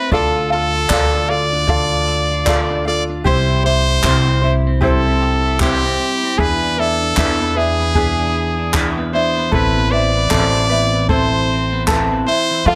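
A brilliant, punchy trumpet leads this easy-going acoustic pop excerpt, its pop-style solo line sitting up front with a light vibrato and a forceful, present tone. Underneath, a fingerpicked ukulele adds a bright accompaniment, while a clean, compressed twelve-string electric guitar picks twangy arpeggios in the background, bathed in spring reverb. At 0.1 seconds, a pizzicato upright bass joins with a woody, dark low end, together with a jazz kit played with brushes, handclaps and a boomy kick. The tempo is a relaxed 76 BPM in 4/4 with a gentle sixteenth-note swing, and the harmony moves from Dm through C and E7 to Amadd9. A moderate studio reverb gives the carefree music a natural sense of room.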